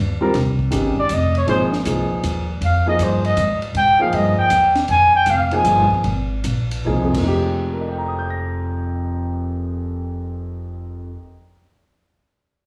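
Modal jazz in a swung 3/4, intense and spiritual, heard as a live club gig through the venue's PA. A mellow, distant trumpet solos from 1.0 to 5.9 seconds over a woody pizzicato upright bass, a warm grand piano voicing an Fm11 chord, and a compact cocktail kit with dark cymbals, a high-tuned snare and a punchy kick. Trumpet, piano and drums carry a slapback echo, and the pace slows from 4.9 seconds in this brief cut.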